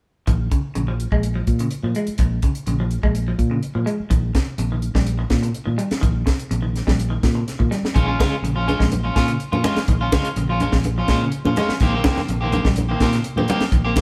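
A moderate stone-room reverb gives this live, one-room afrobeat band a natural sense of space, with the tight funk kit sitting up front: a dry, high-tuned snare, a tight kick and hi-hat drive the straight 4/4 at 125 BPM. From 0.3 seconds, a clean, picked semi-hollow guitar plays hollow-bodied arpeggios in a low register while a dark, round fingered bass anchors the groove in Bb dorian. The harmony moves between Bbm7 and Eb6/Bb, giving the passage a driving, funky pull. At 7.9 seconds, a second electric guitar enters up front with picked stabs, its slightly broken-up warm tone shimmering with tremolo. Congas arrive at 8.2 seconds, ringing and close, struck with hard hands, filling out the percussion as this cut from a longer piece rolls on.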